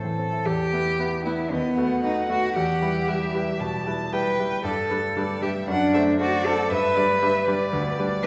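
At 116 BPM in 4/4, with a flexible, rubato pulse, this quick classical-period movement for piano trio in E minor feels stormy and urgent. A grand piano with a worn, present tone carries the accompaniment from the start, reaching from its low bass register up into the middle of the keyboard, while a bowed cello sits up front as the second line, clear and smooth with light vibrato. At 1.5 s the violin enters with the melody, its bowed sound rich and even with vibrato, though it sits more distant than the other two. The harmony moves from E minor through B7 back to E minor, then shifts to G major, passes through D7 and settles on G again. A recital hall's wet reverb surrounds the trio, and the listener seems placed further back in the room. This short excerpt is cut from a longer piece.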